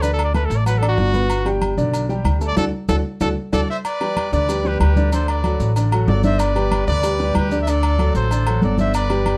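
Festive and sunny, this salsa excerpt in G major moves at a brisk 188 BPM. A bright solo trumpet with vibrato leads up front over a clear baby grand piano with long sustain, a woody pizzicato upright bass and ringing agogo bells and timbales, with thin-skinned congas and grainy maracas tucked in the background. A band accent and drum fill cap the trumpet solo near 3.8 s, while from 3.5 s a tight trumpet section with soft attack and light vibrato carries the melody, all set in a dark production with a touch of reverb.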